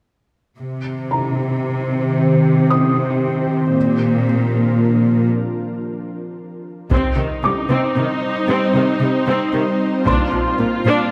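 A concert hall reverb frames this brooding, relentless cinematic excerpt in 6/8 at 76 BPM in C minor, where lush, vibrato-rich cellos hold the bass from 0.6 seconds under an ethereal, detuned pad with slow attack and a soft, felt-muted upright piano carrying tape echo, until a focused viola section and hard-stick taiko ensemble enter at 6.9 seconds for a build-up over Cm and Bb chords following a filter sweep and break.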